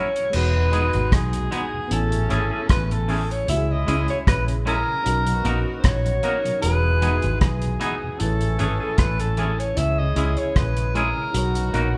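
Smooth and tender, this lovers rock reggae excerpt sets a breathy, whispered alto saxophone melody up front over a cloth-damped, thuddy drum kit with dark cymbals and a round, foam-muted fingered bass, while twangy tremolo guitar stabs, a clear distant horn section, a soft FM electric piano with chorus and dub echo, and a very quiet flute-like tonewheel organ on slow rotary fill out a band playing live in a large studio room over a gently swung Emaj7–Amaj7–C#m–Bmaj7 cycle.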